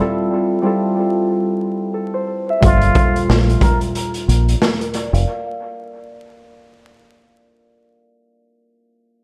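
A ringing, thumb-plucked concert harp sits up front and opens this gritty, reflective boom-bap hip-hop excerpt alone, playing over an Fmaj7 chord before the harmony moves to Gm7 at 2.6 seconds. At that point a raw garage drum kit arrives with a boomy kick, a medium-tuned snare and hi-hat, its saturated sound carrying a rolled-off top and a pumping small-room character, while a deep dub fingered electric bass adds a dark, round, punchy low end. A trumpet with a plunger mute offers a brief, breathy jazz-style solo with a wah-wah tone, vibrato, a soft attack and a whispered, intimate quality, ending at 3.8 seconds. The groove swings gently in 4/4, with a filter sweep running across the section where drums and bass play. The echo-heavy mix is coloured by vinyl crackle, light reverb and small room ambience, and the harp rings on by itself after the other parts drop out.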